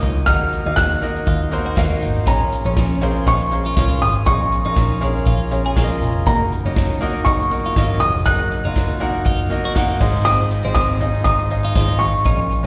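Heard as a live gig through a venue's PA with recital-hall reverb, this excerpt of dramatic, earnest piano-driven pop moves at 120 BPM in 4/4 with a light sixteenth-note swing, its chords passing from Ebm through Bbm7 and back to Ebm before settling on Ab6. A soft, felt-muted upright piano carries the high melody with slapback echo and delay over a clear, polished grand piano accompaniment that adds a fill at 5.3 seconds, while a bright, twangy twelve-string electric guitar plays a riff through phaser and slapback echo. Underneath, a dark, foam-muted picked bass sits round and up front beside a country drum kit with a punchy kick, medium-tuned snare, hi-hat, toms and crash cymbal.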